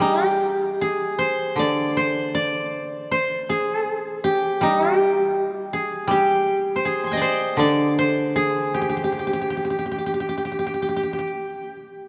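A long plate reverb and a distant, set-back sound surround this austere, calm excerpt of Japanese chamber music in G miyako bushi, moving at about 79 BPM in 4/4 with uneven, rubato beats, where one woody, fingerpicked koto carries the melody up front between G4 and C6 until 12.1 s while a second warm, fingerpicked koto supplies a low accompaniment between D3 and G3 that stops at 9.9 s.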